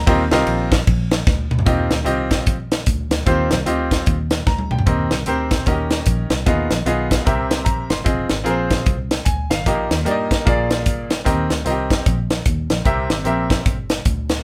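A swung eighth-note groove in 4/4 drives this short cut from a longer uptempo gospel piece, hopeful and jubilant in mood. A crisp fusion drum kit sits up front with a punchy kick and a high-tuned snare, moving across hi-hat, ride, and toms, with brief fills at 1.3 and 4.5 seconds marking the turns into new sections. A bright baby grand piano carries the accompaniment with brilliant, short-sustained voicings, its audible action noise lending an intimate, close feel. Underneath, a fingered electric bass gives a round, foam-muted low end. The harmony moves through rich colors such as Abm6, C7 and Fm7, returning to Eb6 before turning to C7. The piano drops out at 13.7 seconds while bass and drums play on to the end. The band sounds live in one room, lightly reverberant.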